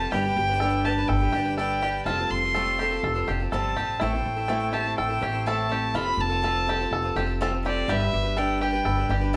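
A straight, steady 4/4 pulse carries this wistful, bittersweet indie folk excerpt, which is cut from a longer piece with a building arrangement. Up front, a single bowed fiddle carries the melody high in its range with a rich, smooth tone and light vibrato. Beneath it, a warm fingerpicked steel-string acoustic guitar and a bright, picked archtop guitar share the accompaniment. A mellow yet twangy banjo adds percussive arpeggios, and a woody pizzicato upright bass sits prominently in the low end. The chords move from G through Fadd9 and Am and back, and the whole band plays live in one room with a moderate studio ambience.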